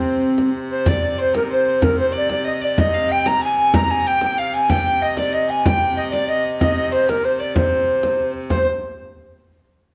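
A hollow, airy tenor recorder opens this short excerpt from a longer medieval dance, sounding together with a dark fiddle and the clear drone of a hurdy-gurdy on C3, with a frame drum joining at 0.1 seconds. Set in C minor at a brisk 188 BPM in a straight 3/4, the piece carries an ancient, mysterious mood. The recorder leads the melody up front with a soft attack and vibrato, while the single fiddle plays a second line sul tasto, its woody tone with light vibrato heard at a distance. The hurdy-gurdy's wheel-bowed drone has a biting, earthy edge, and the frame drum is struck with hard hands, sitting close and present in a live room sound. A moderate recital hall reverb of about 1.5 seconds surrounds the ensemble until the parts end near 8.7 seconds.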